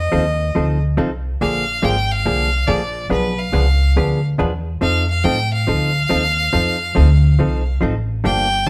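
A bowed fiddle and a plucked upright bass start together, joined a moment later by a hollow-body jazz guitar in this cheerful, playful slice of western swing, cut from a longer piece. The tempo is 140 BPM in 4/4 with a swing feel on the eighth notes, set in F mixolydian and tuned slightly low to A4 = 436 Hz. The fiddle carries the melody with a clear, smooth tone and light vibrato, while the upright bass, with gut strings and a woody, thumpy sound, sits a touch louder in the mix. The electric guitar supplies clean, fingered, compressed accompaniment with a dark hollow-body color as the harmony moves from F7 through Bb9 and Bdim7 before landing back on F7 around 4.8 seconds. All three players sound up front, performing live together in a moderately reverberant stone room that adds a lively sense of space.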